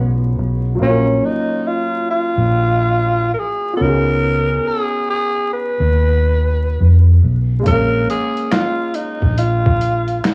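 Heard through lightly reverberant cassette hiss and vinyl crackle, this melancholic, hazy lo-fi hip hop excerpt has the feel of a home tape, cut from a longer piece and set in a swung 4/4. A growling tenor saxophone carries the melody up front, its breathy subtone, raspy vibrato and scooped notes softened by a low-pass filter, tape saturation and plate reverb. Beneath it, a woody, mellow upright piano sits further back with the same filtered tape-and-plate treatment, moving through G#m9, F#maj7/A#, C#9sus4 and A#m7. A foam-muted electric bass, round and punchy, anchors the low end prominently. At 7.7 s a pitched-down boom bap drum kit arrives with a thumpy kick, snare, hi-hat and finger snaps, crunchy with 12-bit sampler grit and compressed tape color.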